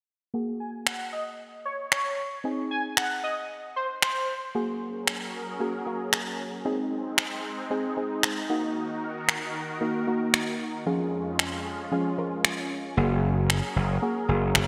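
Built on a straight 4/4 pulse at 114 BPM, this energetic, driving dance-pop excerpt opens with a soft, round pluck carrying the accompaniment from 0.3 seconds, its dark, wave-folded tone softened by chorus and a low-pass filter while a filter sweep runs through the opening passage. A bold, retro octave-doubled lead states the melody from 0.6 to 4.4 seconds, its bright detuned sawtooth colored by vibrato, chorus and delay, and electronic finger snaps enter at 0.9 seconds, layered and tape-warm under gated reverb. From 4.5 seconds a filtered supersaw swell spreads evolving, detuned unison chords beneath the pluck as the harmony moves through Gbadd9, Ab, Ebm and Db/F. Near the close, at 13.0 seconds, a gritty slap bass punches in on a low Gb, overdriven and up front. The whole is steeped in lush hall reverb with a glossy 1980s-style digital sheen.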